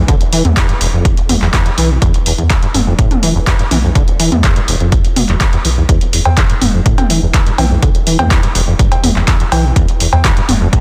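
Acid house with a driving, raw mood, cut from a longer piece: a rubbery, resonant sawtooth acid riff with a saturated filter pluck runs throughout, thickened by ensemble chorus and tape echo. Beneath it sits a round, sustained analog bass in sine and triangle tones with sidechain pumping, while a punchy electronic kick and an up-front analog drum machine enter at 0.1 seconds. The drum machine brings cowbell, handclaps, toms and metallic hats re-recorded in a large room, all framed by light digital ambience and a dense, heavily limited modern master.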